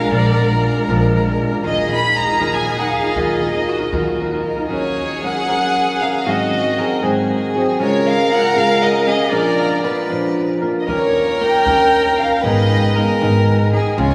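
Swaying in a lilting 6/8, this mariachi-style Mexican folk passage, lifted from a longer piece, feels romantic and proud. A rich violin section carries the melody up front with light vibrato, a soft attack and an intimate, sul tasto tone, while a single clear, focused violin with vibrato plays a second line close beneath it. A fingerpicked flamenco guitar provides the accompaniment throughout, its fresh strings and audible finger squeaks sitting prominently in the mix. A woody pizzicato upright bass anchors the opening until 4.4 s, then returns at 10.9 s. At 4.7 s the harmony moves from a minor opening into a major key, and the whole performance rings out in a long, wet cathedral reverb.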